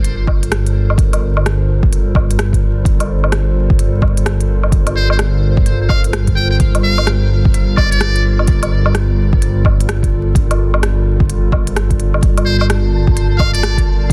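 A warbling, lo-fi pad holding a Gm11 chord opens this ghostly, nocturnal future garage excerpt at 128 BPM, pumping against a dark, rumbling detuned saw bass and a crisp-hatted electronic kit of rim clicks and woodblock, with a deep kick arriving just after. A buzzy, muted trumpet with vibrato plays a forceful jazz-style solo line from 5.0 seconds, its phrases trailing tape echo, and returns at 12.5 seconds as a grainy, flickering texture surfaces in the background. The swung 16ths sit in a dense, heavily limited mix dusted with vinyl crackle.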